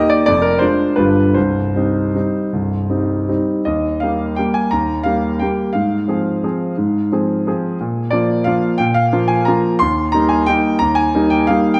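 In a lilting 3/4 waltz time with a flexible, rubato feel, the tempo drifts between 152 and 186 BPM. This short classical piano waltz, cut from a longer piece, carries a wistful, nostalgic mood. A concert grand piano plays alone throughout, its tone clear and open with a deep bass, sitting up front across a range from C1 to C6. The opening in C minor passes through Ddim/F and G7 before settling on Cm, then at 3.7 s the music turns to Eb major, moving through Fm/Ab and Bb before returning to Eb at 9.8 s. A moderate concert hall reverb lends the instrument a natural sense of space.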